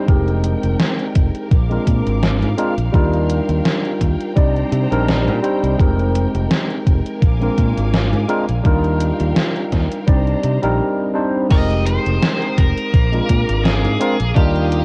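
A bright, clean tine electric piano opens this nostalgic, woozy vaporwave excerpt, its chords colored by analog chorus and delay, while a distant symphonic string section holds lush, bowed harmonies touched with vibrato and a gritty 12-bit sampler texture. A fingered electric bass sits up front with a warm, direct tone, and an overdriven, thumpy electronic kick joins a gated 80s digital drum machine whose snare, hi-hat and crash carry gated reverb and the boxy color of a small room. The groove has a light swing on the sixteenths, and the harmony cycles through Fm11, Bb7, Ebmaj9 and Cm7. After a short break at 10.8 seconds, a high-gain lead guitar enters at 11.5 seconds with a distorted, picked melody trailed by tape echo, playing through to the cut at 14.8 seconds. The whole mix sounds dry and dulled at the top, like a worn cassette with warbling pitch drift.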